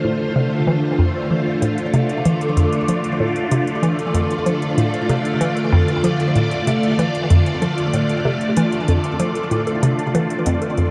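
A swirling, vintage string machine sits up front in this expansive, luminous slice of sequencer-driven space music, holding bright sawtooth chords that bloom with a slow attack and a long release through ensemble chorus and phaser. Beneath it, a hollow square-wave pluck repeats a bouncy, mellow riff in the low register, its fast attack and short decay coloured by chorus, phaser and tape echo. From 1.6 seconds, electronic hi-hat and bongos enter low in the mix, their metallic, analog hats softened by tape echo. The piece moves at 95 BPM in a straight 4/4 in F major, tuned to A4 = 442 Hz, resting on an F6 chord for its full 10.9 seconds. A huge, wet reverb with a 7.6-second decay surrounds the dark, warm production, giving this short cut from a longer piece a sense of vast, glowing space.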